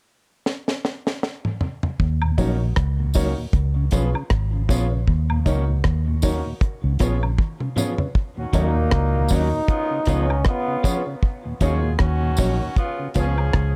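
This roots reggae excerpt moves at 78 BPM in 4/4 with a swung sixteenth-note feel, its serious, hypnotic groove sitting in Eb minor and rocking between Ebm7 and Db7. A deep, dry reggae drum kit opens with a fill from 0.5 seconds, its high-tuned snare, tight kick, rim clicks, hi-hat and toms placed up front, and the foam-muted, round, punchy electric bass joins at 2.0 seconds in a low register. Soon after, a mellow tonewheel organ with chorus vibrato and slow rotary speaker sits in the background, while a slightly broken-up, twangy electric guitar carries dub echo and a baby grand piano adds intimate stabs with audible action noise. Woodblock and tambourine, along with egg shaker and group handclaps, add close, dry percussion at a low level. From 8.4 seconds a distant, roomy horn section plays a second line with light vibrato and dub echo, and a clear, smooth-topped solo trombone states a brief melody with the same echo. 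Studio reverb surrounds the mix.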